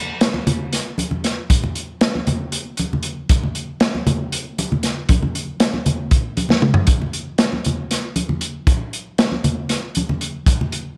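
A vintage drum kit opens this short rock excerpt, joined almost at once by congas, and the two play together from about 0.3 seconds to just before 11 seconds. The groove sits in 7/8 at 234 BPM counted in eighths, with a straight feel and a hazy, trippy mood. The acoustic kit sits up front in a studio room, with hi-hat, a punchy kick, a medium-tuned snare and toms, its tone warm with a rolled-off top. The congas, also up front, have a warm tone, a thick skin and medium tuning, and are struck with hard hands in a live room. A drum fill around 6.5 seconds briefly breaks the pattern, and a light reverb sits over the whole mix.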